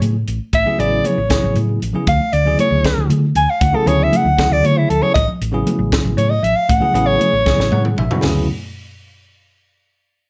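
A bell-like tine electric piano, a round, dark hollow-body electric bass, a crisp fusion drum kit and thick-skinned congas open this bright, funky jazz fusion passage together in a six-eight metre. At 0.5 seconds a breathy soprano saxophone takes the solo up front, close-miked and intimate, with a mellow, whispered tone, soft attacks, scooped notes and vibrato, carried by a slapback echo. The drums sound airy and polished, with a high-tuned snare and punchy kick sitting forward, and a drum fill arrives at 1.6 seconds. The congas stay high-tuned and in the background, while the clean, direct electric piano accompanies over chords moving between Amaj9 and Dmaj9. Near the close, drums and electric piano both play fills from 7.5 seconds under light reverb, and the passage is cut from a longer piece.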